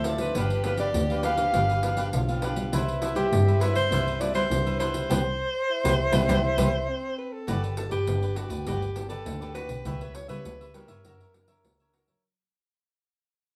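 Samba and choro with a festive, sunny mood, played live by a band in one room with a wet studio reverb, in a passage cut from a longer piece. A breathy, close-miked alto saxophone with subtone carries the jazz-style melody up front, joined until 7.5 s by a dark, whispered tenor saxophone with scooped notes and a soft attack on a second line. Around them sit a crisp, picked cavaquinho, a full-bodied, fingerpicked classical nylon-string guitar with finger squeak in the background, a jingly pandeiro played with soft hands, and an earthy, bowed double bass with light vibrato; the band hits an accent from 5.1 s to 7.5 s before the music fades out.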